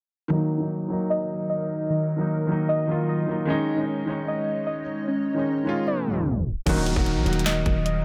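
Half-time 4/4 at 151 BPM drives this brooding, menacing trap piece in Eb minor, which opens at 0.3 seconds with a dark, up-front grand piano with audible action noise and muted felt-like synth keys playing chorused, tape-echoed arpeggios, joined at 0.6 seconds by a hollow, flute-like pad in the background, moving through a long filter sweep and a tape stop from 5.9 seconds until, at 6.7 seconds, a hard-clipped kick, sharp snare, bright hats, claps and crash, a deep sine 808 bass, a brief classical-style brass stab and an electronic downlifter all arrive.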